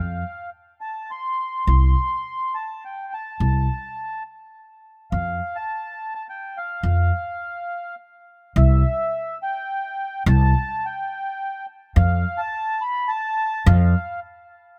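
Warm and anthemic, this cut from a longer indie folk piece moves at 105 BPM in a straight 3/4 in C major, with a reedy, dark accordion carrying the melody over a woody pizzicato upright bass, both up front in a rough home-demo mix with studio reverb, as the chords pass from F5 through Am/C and F to C and back to F before the accordion stops at 14.2 seconds.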